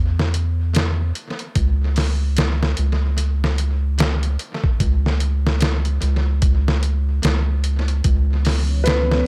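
A slow, swung 4/4 groove opens this dark, cinematic trip hop piece, carried by a sampler-style drum kit that enters at 0.2 seconds with a thumpy kick, medium-tuned snare and hi-hat, its gritty, pitched-down, compressed sound sitting up front and trailed by tape echo. Beneath it, a round analog bass holds the low end from the very start, its deep, nasal tone sustained and dark. The harmony stays open until a C#m7 chord arrives at 8.0 seconds. Shortly after, a moody ambient pad enters in the background with a detuned, warbling vintage character, colored by chorus and its own reverb, and a felt-muted upright piano touches a single B4 at 8.8 seconds, soft and intimate with audible action noise. The mix is steeped in echo-heavy digital ambience, and this excerpt is cut from a longer work.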